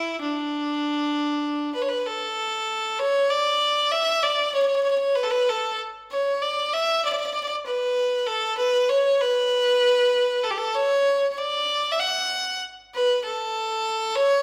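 Warm and festive, this short cut from a longer Arabic piece moves in a three-beat metre with a straight feel. A single bowed violin carries the whole passage as a solo, sitting up front from the opening moment to 14.4 seconds. Its tone is clear and biting with a nasal, intense edge, while vibrato colours the notes and the top of its range stays smooth. The line ranges from D4 up to F#5, and after a brief opening phrase a new section begins at 2.1 seconds and runs to the end. A generous studio reverb surrounds the playing with a live-room feel, and a faint mains hum sits beneath it.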